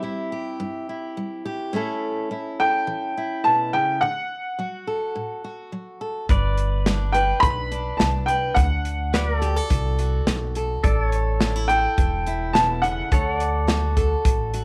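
Heartfelt and sunny, this honky-tonk and classic country excerpt moves at 106 BPM in a straight 4/4. A brilliant, woody upright piano carries the melody with slapback echo, over a warm, picked steel-string acoustic guitar accompaniment that plays from the start. At 6.3 seconds a clean pedal steel guitar joins with compressed, sustained chords, slide and volume swells, while a thumpy, dark pizzicato upright bass with gut strings and an airy, polished drum kit with a punchy kick, medium-tuned snare and hi-hat sit up front, all in a light small-room reverb.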